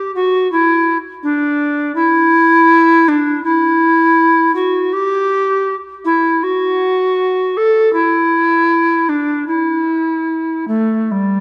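Dance-like and flowing, this brief cut from a longer classical piece is a baroque-style fantasia for a single bass recorder. The pulse sits in 4/4 at around 67 to 83 BPM, but the rubato feel lets the line bend and breathe. The bass recorder plays alone for the full 11.4 seconds, moving between G3 and A4 with a woody, airy tone, a touch of chiff at the start of its tongued notes, and an expressive vibrato. It sits up front in the mix, yet the moderate reverb of a scoring stage, lasting about 2.2 seconds, gives it a slightly distant glow. The production is dark and warm overall, which suits the instrument's low, airy voice.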